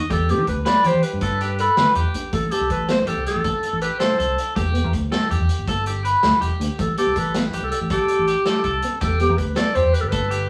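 A straight, danceable 12/8 highlife groove alternates between Em and Am7 in this short cut from a longer piece. A soft-attacked clarinet with vibrato and subtone carries the jazz-style melody up front. A bright, twangy, slightly broken-up electric guitar picks arpeggios beside it. A fingered electric bass adds punch beneath. A vintage acoustic drum kit with a rolled-off top plays hi-hat, kick and snare. A dark, thumb-plucked nylon-string guitar with audible finger squeak sits in the background. The band plays live together with the ambience of a small room.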